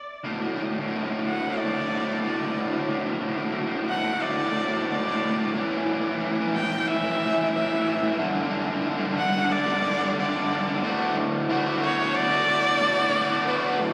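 A straight 4/4 pulse at 91 BPM carries this euphoric, cinematic rock excerpt in D major, cut from a longer piece. A raw garage electric guitar opens at 0.2 seconds with a bright, overdriven, picked riff, double-tracked and placed up front, moving through D5, A5 and G5 as the passage builds. A single bowed viola enters at 1.3 seconds with a focused, slightly boxy melody between B4 and G5, its vibrato trailed by tape echo. At 10.8 seconds the music arrives on D6 and shifts into a new section that holds both parts to the end. A huge, long-tailed ambient reverb soaks the mix into a dreamy haze, with a small room ambience still audible beneath it.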